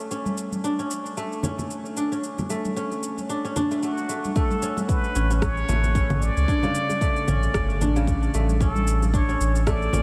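Organic downtempo in A major at 113 BPM with a swung 16th feel, peaceful and dreamy, cut from a longer piece. A bright, crisp fingerpicked kora plays ringing arpeggios up front through a low-pass filter and tape echo, over overdriven electronic shaker, rim click and congas, with acoustic congas and bongos sitting in the background. A plunger-muted trumpet enters at 3.8 seconds with a punchy, vintage, wah-wah jazz solo full of scooped notes and delay, a deep overdriven electronic kick arrives at 4.4 seconds, and a round, mellow sine sub bass with sidechain pumping joins at 5.2 seconds, all bathed in a huge ambient reverb as the harmony moves from Aadd11 to D5/A.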